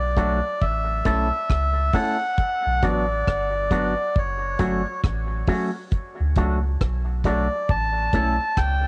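A relaxed 68 BPM groove in 4/4 carries a swung sixteenth-note feel, setting a sunny, laid-back roots reggae mood in D major, tuned slightly low to A4 = 438 Hz. The deep reggae drum kit comes in at 0.2 seconds with hi-hat, rim click and a tight kick, sounding dry, acoustic and up front with a cassette tape grit. Underneath, a soft dub sub bass sits round and mellow between F#1 and D2, its fast attack and sustained notes thickened by tube saturation. An electric guitar with an envelope filter adds bright, twangy, picked accompaniment, clean and compressed and treated with dub echo, placed a little lower in the mix. Leading the tune, a reedy, breathy melodica sings between C#5 and A5 with a nasal, airy plastic-case tone, colored by cassette tape and dub echo. The chords move from D to A, Bm and F#m before returning to D and A, heard in a light reverb and studio ambience that gives this short home-cassette excerpt, cut from a longer piece, an intimate feel.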